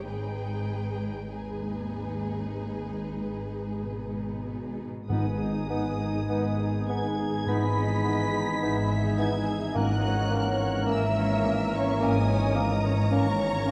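A dark, warm hall sound with generous reverb frames this elegiac, yearning fragment of a slow romantic orchestral movement in G# minor, moving at around 47-54 BPM in 4/4 with a rubato feel. It opens on strings alone: a lush, smooth violin section carries the high melody over a second, richer and closer violin line with expressive vibrato, while dark violas with portamento and warm, even cellos sit in the background above a soft-edged, dark double bass section. At 5.1 seconds the winds and brass enter together, bringing an airy, hollow large flute ensemble, a very quiet clear solo clarinet, a vintage-toned bassoon, a mellow, very quiet trombone section, and French horns holding sustained chords. A distant, roomy solo trumpet adds stabs, and very quiet timpani struck with hard mallets on calf heads sound from 5.1 to 11.4 seconds. The harmony moves from G# minor to Emaj7 over G# and then to A# diminished over G#, giving the full ensemble a searching, mournful ache.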